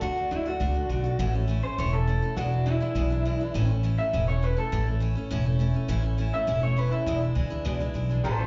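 Rockabilly with a rollicking, retro mood, this short excerpt cut from a longer piece moves at a brisk 204 BPM in straight 4/4, set in A major. An upright bass anchors the low end with a woody, thumpy pizzicato tone from gut strings, sitting dark and up front in the mix. Over it, an electric guitar through a small old amp carries the melody, its bright, twangy, slightly broken-up picked sound coloured by plate reverb, slapback echo and tape echo. A picked steel-string dreadnought acoustic guitar fills in the accompaniment with a full-bodied ring, treated with its own plate reverb and slapback echo. All three parts play throughout, over chords moving from D to A to E7 and back, with the E7 returning at 7.1 seconds. The sound is that of a live gig heard through the venue's PA, with club reverb and a dulled top end that lends an in-the-room feel.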